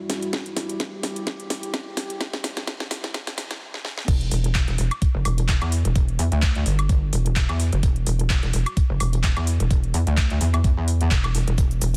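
A dense, heavily limited and dry mix carries this bouncy, swaggering bass house excerpt in E minor at 128 BPM with a swung 4/4 feel, where a moody, detuned analog pad with lush chorus and sidechain pumping holds an Emadd9 chord in the background, a knocking electronic kick sits up front, and a house kit adds cracking snare, metallic hats, handclaps, shaker, woodblock and crash through a filter-swept build-up with drum fills, until at 4.1 seconds the drop brings in an aggressive, distorted FM wobble bass with chorus and sidechain pumping alongside a very quiet, gritty breakbeat sampler-style kit of hi-hat and snare.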